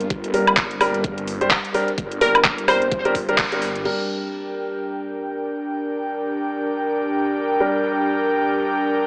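With an AM-radio sound and a moderate plate reverb, this swaggering, aggressive bass house excerpt in G minor moves at 128 BPM with a swung 16th feel: a deep, moody ambient pad sustains in the background under a thick, swirling phased saw bass, an up-front garage kit of metallic hats, handclaps, crash and woodblock over a knocking kick, and short grand piano stabs pumping to the sidechain, while a glassy, crystalline wavetable pluck melody flickers in at 2.2 s before the bass and drums fall away by 4.0 s and an airy, breathy pad enters up front from 3.9 s.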